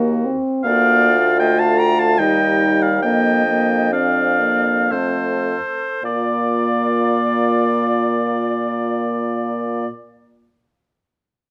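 This is a slow, romantic classical movement for wind quintet in 3/4, tender in mood and shaped with a rubato feel in B-flat major, moving between about 50 and 79 BPM and slowing down through its first 6.0 seconds. French horn, clarinet and bassoon open together at the start, the horn clear with a light vibrato, soft attack and smooth top, the clarinet soft-edged with a vintage character, and the mellow bassoon carrying the bass with its own light vibrato. At 0.6 seconds the flute takes the melody, a pure metallic tone with vibrato and tongued notes that sits distant in the background, while the bright oboe plays a prominent second line up front. The harmony passes from E-flat minor through an E-flat major ninth and F before settling on B-flat as a brief second section begins at 6.0 seconds. A moderate, large studio reverb gives the ensemble a spacious, gentle glow in this short passage cut from a longer piece.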